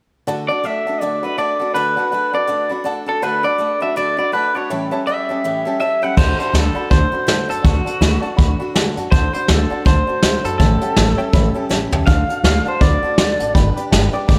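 Swung eighths at 163 BPM in 4/4 drive this rollicking, retro rockabilly excerpt in D major, where a twangy, slightly broken-up electric guitar carries the melody through spring reverb and analog delay over a mellow upright piano and a bright, full-bodied picked acoustic guitar, until a woody pizzicato upright bass and a roomy brush kit with dark cymbals and a punchy kick join at 6.2 seconds, the drums adding a fill at 11.7 seconds.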